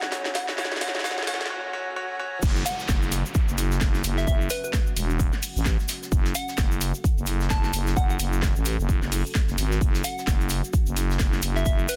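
A swung 4/4 groove with garage drums carrying a cracking snare and warm hats, layered with a very quiet brushed kit, drives this swaggering, aggressive bass house excerpt, which opens on a build-up where bright grand piano stabs with sidechain pumping and delay, and a drum fill leads into a short break filled by a swell. At 2.4 seconds the drop arrives: a punchy electronic kick and a growling, thick FM bass with tube saturation and sidechain pumping sit up front, while a grainy tube shaker hovers in the background. Throughout, a soft, pure synth bell melody drifts through chorus, phaser and delay over a deep, moody ambient pad, all set in light reverb and a dense, heavily limited modern master.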